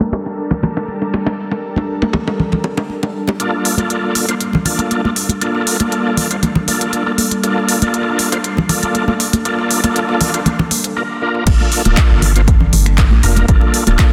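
An ethereal, airy pad on G minor chords opens this hypnotic afro house excerpt at 119 BPM alongside bright, high-tuned congas and tight bongos under a filter sweep, then at 3.4 seconds the bongos drop out as gritty, overdriven organ stabs with fast rotary swirl and delay arrive with a smooth-hatted deep house kit of finger snaps, handclaps, toms and crash to build through a drum fill, before the drop at 11.5 seconds brings in a punchy kick and a round, deep analog bass, with the pad, organ and bass pumping inside a lush hall reverb and a dense, heavily limited master.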